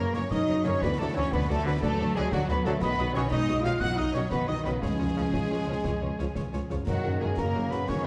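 A dark, distant French horn section carries sustained chords at the front of this triumphant, heroic adventure film cue in F# major, moving at 119 BPM in a straight 12/8 over an F#, D, B, C# and back to F# progression. A lush, vibrato-rich violin section sings the melody, while a second violin line, an airy silver flute, a smooth cor anglais and smooth, even violas fill in behind. Below them sit mellow, ringing harp arpeggios, focused cellos, woody double basses, a very quiet tuba and bright trombones. Close, dry snare, bass drum and clash cymbals drive the rhythm, with a barely audible timpani hit at 4.8 seconds. The whole passage is bathed in a wet scoring-stage reverb.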